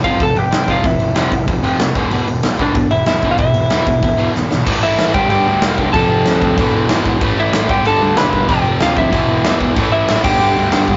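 A rough rehearsal-room recording with tube saturation, light reverb and a dull top end frames this aggressive, raw punk rock passage, cut from a longer piece and driving in a straight 4/4 at 188 BPM. Up front, a dark, slightly broken-up lead guitar carries the melody from the start, while a big acoustic rock kit with a punchy kick, medium-tuned snare, hi-hat and bright crash cymbals drives beside it. Underneath, a bright distorted electric guitar and a very quiet, crunchy overdriven guitar play low riffs, joined by a growly, fuzzed electric bass sitting in the background. The chords move from F5 to E5 before a drum fill at 4.4 seconds, and at 4.7 seconds a second section begins, with a warm, double-tracked fuzz guitar thickening the riffs as the changes cycle more quickly through A5, G5, F5 and E5 until the cut at 11.0 seconds.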